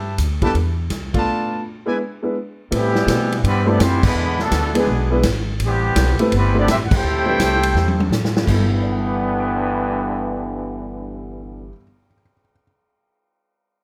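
Big band swing with a joyful, buoyant lilt, this short excerpt cut from a longer piece opens with a clear, smooth-topped trumpet section firing off brief stabs over a woody, growly pizzicato upright bass, a punchy, natural-sounding drum kit and an intimate grand piano whose action noise and short sustain are audible. After a break, a dark, vintage-toned trumpet section takes the melody up front at 2.7 seconds, joined by a soft-attacked trombone section carrying a second line with vibrato. The full band hits accents along the way. The drums, with their medium-tuned snare, ride, hi-hat, crash and toms set in a big room, play a fill from 7.8 seconds and stop at 8.6 seconds. Bass, trombones and the warm piano carry on to the close, all wrapped in a light reverb.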